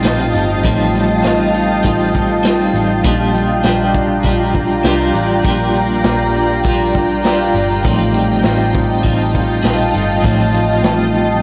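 Blissful and floating, this short dream pop cut from a longer piece moves at 100 BPM in 4/4 in Bb major, drifting over F9, Bb6 and back to F9 at 7.8 seconds. A bright, blurred granular cloud pad sits up front with slowly evolving sustained chords, while a clean picked electric guitar shimmers with tremolo and lush chorus and a dark, fingered electric guitar plays arpeggios in the background through subtle chorus and tape echo. Beneath them, a round, foam-muted picked bass with transformer saturation and a vintage kit with a punchy kick, medium-tuned snare, hi-hat and a rolled-off top anchor the groove, all captured in a gritty hardware recording with small room ambience and light reverb.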